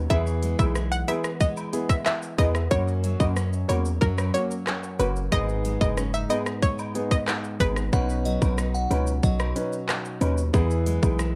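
A punchy, heavy 808-style bass sits up front in this bouncy, summery dancehall excerpt, joined by a tight electronic drum kit of kick, hi-hat, rim click, handclaps and shaker that rings in a large room. A fresh-stringed, fingerpicked nylon-string guitar spins arpeggios with audible finger squeak, while a concert grand piano with deep bass and short sustain plays accompaniment and a distant woodblock and cabasa fill out the background. A round sawtooth pluck with chorus and tape echo carries the melody until 7.7 seconds, when a glassy, crystalline FM bell takes over a second line over chords moving from E through F# and G#m to Badd9, all in a dark production with digital ambience.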